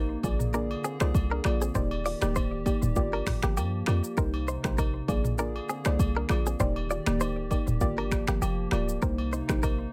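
A dry, close-sounding excerpt of smooth, mellow afrobeats at 99 BPM in C minor, where a hollow, flute-like pad pumps softly in the background beneath a bright, twangy clean electric guitar riff with tape echo, a round, dark pluck with chorus and plate reverb, a punchy, tight 808-style bass up front, an electronic afro-pop kit of deep kick, metallic hats, snaps, rim clicks, shaker and toms, and faint agogo bells, all moving through Bb7, Ebmaj7, Gm7 and Cm7 with a light sixteenth-note swing.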